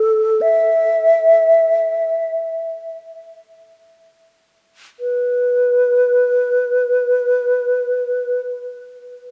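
Serene and lyrical, this brief classical passage is an expressive piece for unaccompanied alto flute in free time, cut from a longer work. The alto flute plays alone from 0.0 to 8.4 seconds, singing in a range from A4 to E5 with a pure, warm tone, vibrato and tongued notes. Its highs are lifted, and it sits up front in the sound. The opening section slows down over its first 5.0 seconds before a second section begins. A wet church reverb with a long decay of 3.4 seconds surrounds the flute, letting each phrase hang in a spacious, resonant room.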